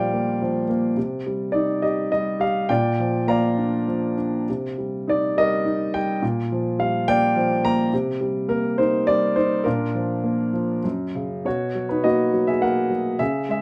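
A dark grand piano carries this short classical fragment on its own, its mellow, boxy tone sitting up front with long sustain and the clatter of its action audible beneath the notes. The mood is bittersweet and moody, shaped by a lyrical line in 3/4 metre that breathes with rubato. The harmony circles between Gm7/Bb and C minor colours for most of its length, passing through Bb and a Gb5 before turning toward a Bmaj7 at 11.5 seconds, where a new section begins. The playing spans from Gb2 up to Bb5, giving the intimate performance a full register. A moderate studio reverb adds a modest sense of room around the instrument, and the passage, cut from a longer piece, ends at 13.6 seconds.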